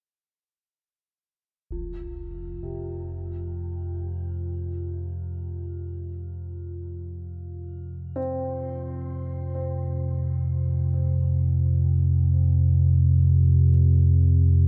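In free time, this ominous, dark ambient drone excerpt opens at 1.7 s on an F5 chord, with a brief, close, acoustic stroke of concert bass drum and a ringing, metallic bronze singing bowl, played with a felt mallet and bathed in shimmer reverb. From 2.1 s a deep, rumbling, detuned synth drone of triangle and sawtooth tones sits up front, its slow attack and long release moving through a filter sweep, and from 2.6 s a vintage, smooth grand piano plays low arpeggios through delay and shimmer reverb. The bowl, piano and drum are each given a fade-in, all inside a light studio ambience.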